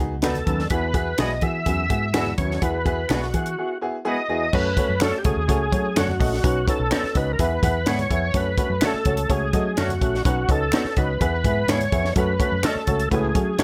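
Passionate and driving, this uptempo 1960s-style soul excerpt moves at 126 BPM in a straight 4/4, centred on F# dorian. An overdriven tonewheel organ carries the melody up front, its thick, gritty tone colored by chorus vibrato and a slow rotary speaker. Beneath it, a slightly detuned, woody upright piano and a round, foam-muted electric bass hold down the accompaniment from the start, while a compact cocktail drum kit with a high-tuned snare, punchy kick and dark cymbals sits prominently alongside twangy envelope-filtered guitar stabs. Very quiet, low-tuned congas and finger snaps from a small room add texture in the background. A raspy, growling baritone saxophone plays a low riff from 0.5 to 4.5 seconds, then returns at 12.2 seconds. After an opening on B and Eadd9, the harmony cycles through F#m, Badd9 and E, all set in light reverb.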